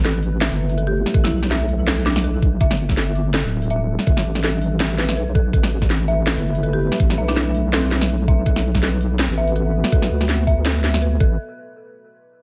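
A deep, wobbling bass sits up front and anchors this tense, spacious half-time drum and bass excerpt, while a cracking snare and crisp hats drive the groove and a knocking electronic kick joins at 1.1 seconds. An eerie, inharmonic synth bell plays arpeggios through dub echo over moody, evolving pad chords that pump in the background. A woody, close-miked marimba briefly carries the melody at 0.9 and 6.7 seconds, all set in a light digital ambience.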